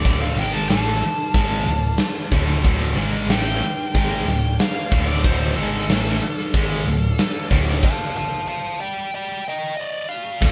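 Recorded as a band playing live in one room with a moderate studio reverb, this hard rock excerpt has a heavy, menacing feel at 93 BPM in straight 4/4, tuned to A4 = 437 Hz. A huge arena drum kit sits up front with a pumping hall sound, punchy kick, medium-tuned snare, bright hi-hat and crash cymbals. Underneath, a dark, round hollow-body short-scale bass is picked and amped in the low register. Two guitars drive the riff: a high-gain distorted guitar cuts through with a biting edge, while an overdriven guitar with tremolo adds a mellow layer in the background. A smooth, overdriven lead guitar plays the solo melody, and a thick, gritty tonewheel organ, very quiet through a slow rotary speaker, holds sustained chords. The band rides a D minor chord until 9.4 seconds, with a stop that begins at 7.8 seconds and carries the solo to the cut.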